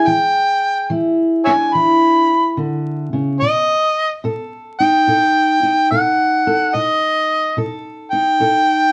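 A wet studio reverb and vinyl crackle frame this gritty, soulful acoustic country blues, an excerpt cut from a longer piece, moving at a slow 72 BPM with a swung feel. An amplified, overdriven harmonica carries the melody up front, its tone warm yet gritty with light vibrato, tongue slaps and scooped notes in a jazz-inflected solo. A fingerpicked steel-string acoustic guitar with a warm tone and fresh strings accompanies it throughout, shifting from E7 to B7 at 3.4 seconds.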